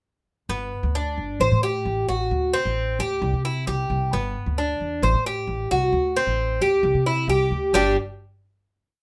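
Sunny and danceable, this short Cuban son and guajira piece sets an up-front acoustic tres, picked on metallic double strings with some octave doubling, spinning an arpeggiated guajeo over a woody, dark pizzicato upright bass playing a syncopated figure. Both enter at 0.5 seconds and cycle through a montuno vamp in moderate studio reverb until a final chord arrives at 7.7 seconds, with the instruments stopping at 8.0 seconds.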